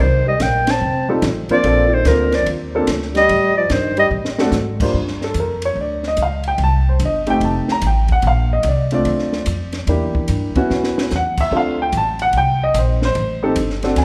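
Small-group swing and bop jazz in G minor at 146 BPM with a cool, moody feel: a soft-attack clarinet with vibrato and scooped notes carries the melody over a veiled, bucket-muted trombone second line until 4.1 seconds, while a woody, thumpy pizzicato upright bass runs the full 14 seconds, a baby grand piano comps from 1.1 seconds, and a dark cocktail kit with a high-tuned snare adds fills at 4.1 and 10.7 seconds, all set in a recital-hall reverb.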